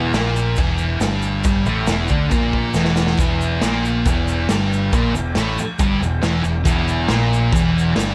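A thick, double-tracked fuzz guitar riff sits up front beside a growling, bright overdriven bass from the very start of this raw, swaggering garage rock excerpt in straight 4/4, joined at 0.1 seconds by a boomy, gritty drum kit with dark cymbals and a pumping small-room sound that plays a fill between 2.8 and 3.2 seconds, while a grainy egg shaker sits in the background under light reverb.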